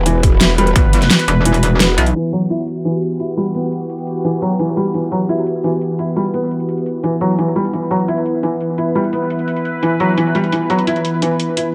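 Futuristic and dark, this excerpt of technical drum and bass in E minor runs at 172 BPM over an Em chord, with a bright, airy, detuned sawtooth pad holding sustained chords that pump against the beat. A growling, saturated bass and a metallic FM wobble bass dominate the opening seconds, while a punchy electronic kick sounds only briefly near the start. From 2.2 s a filter sweep colours a soft, intimate felt-muted upright piano playing delayed, pumping arpeggios, as a layered drum kit with a huge snare, metallic hats and crash carries on in light digital ambience.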